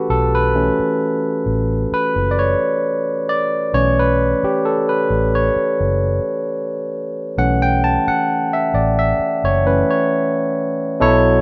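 R&B with a smooth, late-night mood, this short excerpt from a longer piece settles into a slow 4/4 groove with a light swing on the sixteenths. A barky tine electric piano carries the music from the very start, bright and lightly overdriven through a combo amp, sitting up front in the mix and stretching across a broad range as it takes a solo from 0.0 to 11.0 seconds. Beneath it, a vintage muted fingered electric bass enters at 0.1 seconds with a dark, round, foam-muted tone, staying low and amped. The harmony rests on a single B9sus4 chord, giving the passage a suspended, unresolved colour. Light reverb and a rough home demo mix lend the recording a casual, intimate character.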